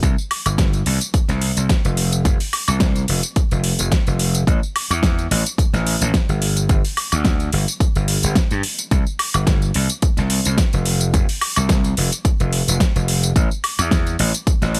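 Nu-disco at 108 BPM in 4/4, with a light 16th-note swing that gives this short cut from a longer piece a sensual, cosmic mood. A gritty slap bass runs from the start to 14.8 seconds, its electric tone bright, punchy and overdriven, sitting between F1 and G2 and placed up front. Alongside it, an electronic kick drum hits hard and layered, its punchy, overdriven thump re-recorded in a small room and kept close. A pop drum kit fills out the groove with a fat snare, metallic hats, tambourine and woodblock, also layered, driven into overdrive and given the same small-room treatment. The overall sound is dry and forward, with little reverb, so the saturated rhythm section feels immediate and tactile.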